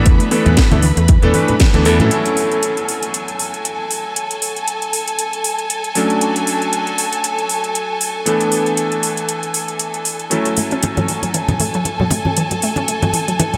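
A vintage electric grand piano with a clangy low end sits up front, its chords washed in lush chorus, tape echo and sidechain pumping, in this sensual, cosmic nu-disco excerpt at 117 BPM in F# minor with a light 16th-note swing. Distant, vibrato-rich symphonic strings hold sustained chords behind it, while a detuned sawtooth unison pluck with a cassette-tape tint spins arpeggios in the background. The pluck returns at 10.3 seconds. A punchy electronic kick and a bright fingered electric bass drive the opening with the congas until a band accent at 1.6 seconds. From 2.1 seconds the house kit's cracking snare and metallic hats carry on through a dreamy cathedral reverb over F#m7, Dmaj7 and E7sus4 changes, and the low-tuned, ringing congas rejoin at 10.6 seconds.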